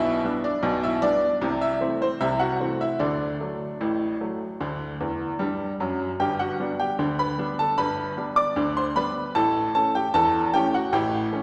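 A woody, vintage-sounding upright piano opens this lively, cheerful ragtime passage alone, its short-sustained notes sitting up front while a concert hall's lingering reverb surrounds them. Moving at 76 BPM in a straight 2/4 in G major, the piano covers a broad range, playing a fill from 5.0 seconds before a new section begins at 6.2 seconds. The harmony moves from G over B through A minor and D, then settles on G before turning to A7 at 9.4 seconds as this cut from a longer piece closes.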